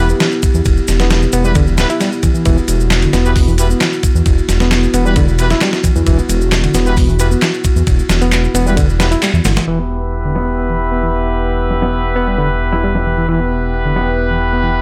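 Breakbeat with a funky, playful streak, this excerpt is cut from a longer piece and rides a straight 4/4 groove. A dusty soul sampler-style drum kit sits up front with a thumpy kick, fat snare and filtered hi-hat and ride, while an electronic shaker and handclaps add overdriven analog texture until 9.7 seconds. Underneath, a dark detuned saw bass rumbles deep and beating, pushed through tube saturation. An overdriven reed electric piano plays a gritty riff through a combo amp with fast tremolo and tape echo, and a clear horn section punches in with stabs that have a smooth top. A moody analog pad holds sustained chords with chorus, sampler grit and sidechain pumping, and after a band accent at 9.2 seconds, filter sweeps move across the piano and horns through the closing section.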